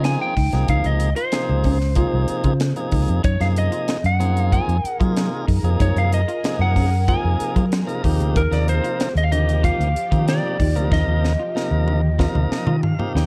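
A dark, warm production in a small room frames this bright, soaring stretch of electric jazz fusion, cut from a longer piece and set at 94 BPM in a straight 4/4 in Eb major. A slightly broken-up, compressed lead guitar carries the melody between Bb4 and Ab5 with a slapback echo. Beneath it sit a full, lightly overdriven tonewheel organ with vibrato and key click, and a clean electric guitar playing picked stabs through lush chorus in the background. The round, amped fingered bass sits up front as the loudest part, while a crisp, polished fusion kit with a high-tuned snare and punchy kick works across hi-hat, kick, snare and toms. At 4.5 seconds a shimmering, ethereal pad enters with sustained chords, its detuned, warbling octave-up shimmer and long release hovering behind the band as the harmony moves from Dbmaj9 to Gbmaj9 and on to Ebmaj9. A drum fill from 10.9 seconds, joined near the end by an organ fill, closes the passage.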